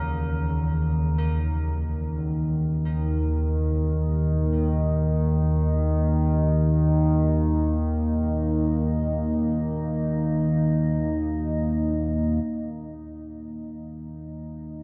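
Ominous and desolate, this ambient fragment drifts in free time, cut from a longer piece. It opens on close-miked carillon bells, bronze and ringing with a worn iron clapper, whose bright arpeggios carry a tape echo and fade away by 6.2 seconds. Beneath them, an analog drone built from sawtooth and pulse waves sits up front throughout, mellow and evolving under a chorus. From 4.5 seconds a dark analog pad of detuned square, sawtooth and triangle tones with a sub octave adds deep, moody sustained chords through chorus and phaser. The whole is bathed in a wet cathedral reverb with a faint mains hum underneath, and a new section begins at 12.5 seconds as the drone and pad hold on to the close.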